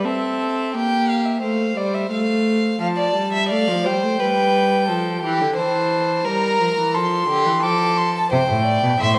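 This is a baroque-style classical fugue for string quartet in F major, moving at a stately 87 BPM in a straight 4/4 with an elegant, poised character. The first violin carries the melody high in its register with an airy, nasal bow sound. The second violin weaves a rich second line beneath it, set up front. The viola supplies a smooth-topped accompaniment in the middle range and drops out at 8.3 s, the moment the cello enters on the bass with a light vibrato and a more distant placement. All four players use gut strings in period style, giving the ensemble a shared reedy edge, and the harmony circles between C7 and F with a passing G7 before closing on an open C fifth. A wet recital-hall reverb with a 1.6-second decay surrounds this brief passage, cut from a longer piece.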